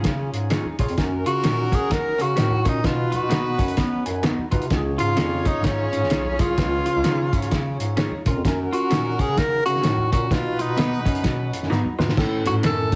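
A swung 4/4 groove at 129 BPM drives this uplifting, danceable 1960s-style soul fragment in Db mixolydian, where a cloth-damped, thuddy drum kit with a fat snare and dark cymbals sits up front beside very quiet bright congas, a vibrato-rich bass clarinet carries the bass line in a jazz style, and a mellow, scooping tenor saxophone leads the melody through plate reverb over a distant, roomy horn section, while a dark hollow-body jazz guitar riff and slightly broken-up stabs from an electric guitar through a small old amp stay in the background, a worn, slightly out-of-tune, lightly overdriven tine electric piano adds accompaniment with fills at 3.8 and 7.7 seconds, finger snaps appear at 12.6 seconds after a drum fill, and the whole mix has a heavily compressed radio sound.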